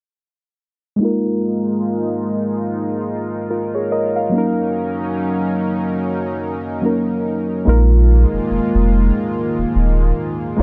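R&B at 72 BPM with a swung sixteenth feel, moody and sensual, moving from Bb7sus4 to Ebm7 and back. Muted, felt-like synth keys with chorus carry the accompaniment under a filter sweep from 1.0 to 7.7 seconds, alongside a shimmering, retro pulse-width pad holding detuned, slow-blooming chords. At 7.7 seconds a deep, round sub bass enters up front, and light digital reverb softens the dark production.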